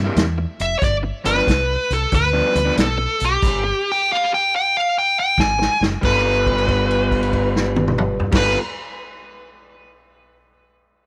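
Electric blues shuffle in G mixolydian at 92 BPM, swinging its eighth notes with a laid-back, swaggering feel, this short section is cut from a longer piece. An overdriven semi-hollow guitar plays the riff from the very start, its picked hollow-body tone sitting alongside a deep, round, punchy fingered electric bass. A vintage acoustic drum kit enters at 0.2 seconds, distant and roomy yet up front, with dark cymbals, a medium-tuned snare, a tight kick and a rolled-off top. At 0.6 seconds a dark, smooth lead guitar with overdrive takes the melody, picked and placed forward in the mix. The harmony moves from C7 to G7, drops to a chord-free stretch, then an Ab7 under a drum fill leads to G9 at 6.0 seconds, where a note is held until 8.2 seconds. The sound is dry, with little reverb and a faint mains hum underneath.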